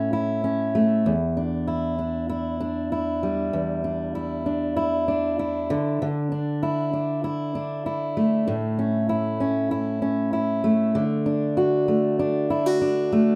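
Easy-going and sunny, this short pop excerpt at 97 BPM in D major features a lone fingerpicked steel-string dreadnought acoustic guitar, up front with fresh-stringed warmth, moving through Em7, Dsus2 and A before settling on D at 10.9 seconds, all in a rough home-demo sound with a wet studio ambience.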